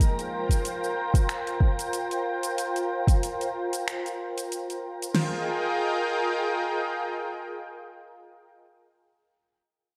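A lush, detuned unison pad with chorus sits up front in this relaxed sunset chillout excerpt at 93 BPM in F minor, its filter swept across sustained C7sus4 chords, while a produced electronic R&B kit of soft kick, fat snare and crash, plus metallic hi-hat, finger snaps and shaker, gives a lightly swung 16th-note feel, and a breathy, wind-like tuned noise layer drifts in the background; the drums and texture stop near 5.2 s, leaving the pad alone to hold an Fm11 chord until 8.5 s in a dark hall reverb.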